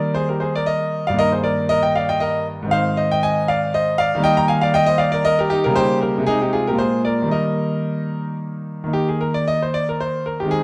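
In a lilting 3/4 at 117 BPM with a rubato feel, this short passage from a baroque-style suite movement in Eb major, tuned to A4 = 439 Hz, moves with a dance-like, radiant grace. A solo concert grand sits up front, its clear, natural tone spanning G2 to Bb5 with a deep bass and long sustain, wrapped in moderate recital hall reverb and a dark production. The harmony moves from Eb through Ab and a Bb7 cadence back home by 7.3 seconds, then settles onto a bare Eb5 at 8.9 seconds for a brief new section.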